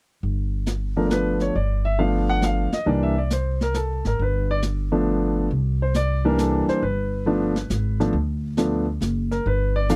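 Sophisticated and relaxed, this excerpt of a jazz piano trio swings in 3/4 at 137 BPM in G mixolydian, moving between G9 and C9 chords. A pizzicato upright bass with a woody, up-front tone and a brushed drum kit with a medium-tuned snare and hi-hat start at 0.2 seconds, and the upright piano enters at 1.0 seconds with a polished, present voice and long sustain. The dry, close recording has a 1970s studio character, with the drums sounding as if played in a small room.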